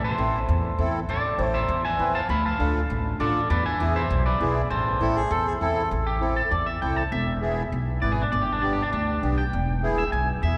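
A twangy, slightly broken-up electric guitar carries the melody over a woody, thumpy pizzicato upright bass from the very start of this driving, passionate Latin cut at 199 BPM in A harmonic minor. A sweet, dark accordion with light tremolo tuning joins as accompaniment, and a breathy, nasal melodica adds a brief second line from 5.0 s. At 5.9 s the key settles into A minor and the guitar, with its spring reverb, takes a clean solo, all of it bathed in the long cathedral reverb of a church or concert hall.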